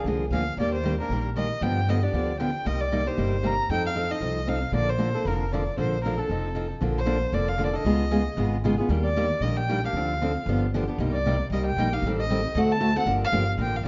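A moderate recital-hall reverb gives this short cut from a longer piece a natural sense of space, and its top end is gently rounded off above 7.5 kHz. It is lively, playful acoustic string swing in the jazz manouche style, moving at a brisk clip with a swung eighth-note feel. The picked steel-string acoustic guitar carries the accompaniment from the first moment, its concert tone sitting up front as it moves through a busy run of seventh and extended chords. Beside it, the pizzicato upright bass adds a woody, thumpy low end with a bright edge from its steel strings. A single bowed violin enters at 0.3 seconds with the melody, its smooth, even tone warmed by vibrato and placed close to the listener. Around 6.8 seconds the tune moves into a new section, where the harmony takes a colourful turn before working through a chain of minor and dominant chords toward the close of the cut.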